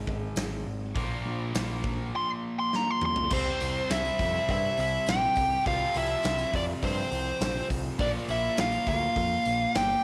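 Driving and swaggering, this classic rock excerpt in straight 4/4 opens with a dark, double-tracked overdriven guitar riff over growling, overdriven picked bass, a big-room drum kit with bright cymbals and a punchy kick, and a very quiet, jingly tambourine, before a biting, up-front lead guitar with slapback echo enters at 2.2 seconds and a fuzzy octave lead slips in behind it at 3.3 seconds, just after a drum fill, all set in light reverb and studio ambience.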